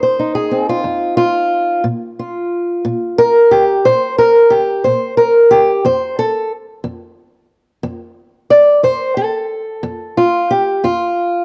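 In a slow 12/8 at 60 BPM with a straight feel, this brief cut from a longer acoustic country blues piece moves in F mixolydian with a soulful, gritty mood. A lone fingerpicked ladder-braced acoustic guitar carries the whole 11.4 seconds up front, its old strings giving a dark, woody, boxy tone across a range from F2 to D5, shifting from F5 to Bb5 at 1.8 seconds and settling on F at 5.8 seconds. Light studio reverb surrounds the homespun sound, and the guitar carries the texture of cassette tape.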